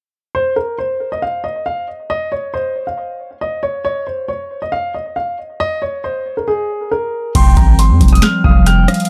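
An echo-heavy, dry-roomed mix opens this eerie, hard-hitting trap cut in F minor at 137 BPM, moving in a half-time feel: a dark, intimate baby grand piano carries the melody alone from 0.3 seconds, its action noise audible and its short notes trailing tape echo. At 7.3 seconds a booming analog drum machine arrives up front with a deep kick, crisp snare, metallic hats, finger snaps, rim clicks and a crash. A breathy, flute-like synth lead with vibrato, chorus and tape echo adds a second line, while a long, sine-toned 808-style bass and a warbling, nostalgic tape-like pad settle on an Fsus2 chord before the excerpt cuts off.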